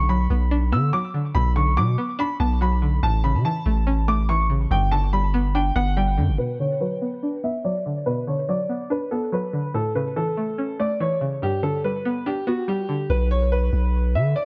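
A half-time drill groove sets a menacing, ominous mood in this hip hop cut from a longer piece, with a deep, sine-toned 808-style bass holding long sustained notes until 6.4 seconds and returning at 13.1 seconds. A worn, boxy grand piano carries the melody through low-pass filtering and dub echo, while a twangy, string-like resonator pluck with a sawtooth edge, a noise layer and chorus supplies the accompaniment. A filter sweep moves across the pluck in the middle section, all within an echo-heavy mix with light reverb.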